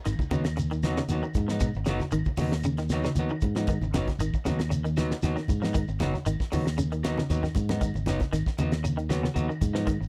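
A straight 4/4 groove at 116 BPM drives this hypnotic afrobeat excerpt in G# minor, opening on a G#m7 chord. A damped 70s drum kit with a fat snare and tight kick anchors the pulse, joined by low-tuned congas with a thick-skinned, hard-handed attack sitting in the background, a grainy shekere and distant, woody claves. Up front, a fingered electric bass with a dark, round tone carries the low end. A bright, clean semi-hollow guitar picks arpeggios through analog chorus, while a second guitar, slightly broken-up and lo-fi through a small old amp, adds stabs. The drums break into a fill from 7.0 to 7.8 seconds, and the whole piece has a dry, close 1970s studio sound with little reverb.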